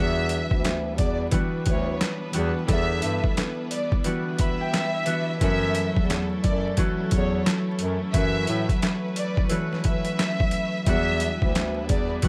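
This is a gritty, dark boom-bap hip-hop excerpt at 88 BPM in 4/4, with a swung sixteenth-note feel and an E dorian colour that moves from Em7 to F#m7 at 5.4 seconds and back to Em7 at 10.9 seconds. A sampler-style drum kit enters at 0.3 seconds and sits up front, its thumpy kick, medium-tuned snare, hi-hat and handclaps pitched down, compressed and overdriven for a grimy punch. Beneath it, a solo bass clarinet carries the low line in a classical style, sounding distant and roomy yet still prominent. A fingerpicked concert harp rings out acoustic accompaniment through a cassette-tape haze, while a bowed symphonic violin section sings a lush, smooth melody with vibrato, touched by delay and plate reverb. A rich studio string section holds sustained chords in the background, and vinyl crackle and light reverb give the whole track a dusty, sampled character.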